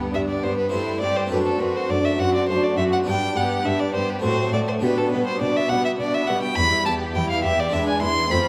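A bright, festive baroque-style concerto movement in G major and a straight 3/4 at 103 BPM opens with a very quiet, lush symphonic violin section on the melody, an expressive chamber violin section on a second line, a full, brilliant French-style harpsichord, and a smooth viola section in the background. From 0.1 s a focused, up-front solo violin with vibrato takes the melody high above, while an even chamber cello section bows the bass. The strings and harpsichord ring in a concert hall reverb, with chords such as D7/F# and F#dim/A turning toward an E7 at 7.7 s in this brief cut from a longer piece.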